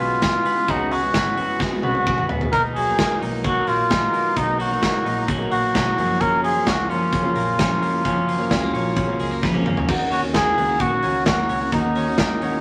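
A straight 4/4 pulse at 130 BPM drives this restless, wistful fragment of jangly indie pop in Eb minor, where a veiled, breathy cup-muted trumpet sings the melody up front over shimmering, octave-doubled fingerpicked twelve-string acoustic guitar, twangy compressed twelve-string electric arpeggios, a round, foam-muted vintage bass sitting in the background, and a punchy big-room rock kit with bright cymbals that enters at 0.2 seconds and fills at 1.6 and 9.4 seconds, moving through Db7sus4, Bmaj7 and Gbmaj7 before settling on Ebm7 at 9.9 seconds, all in moderate studio reverb with a layer of vinyl crackle.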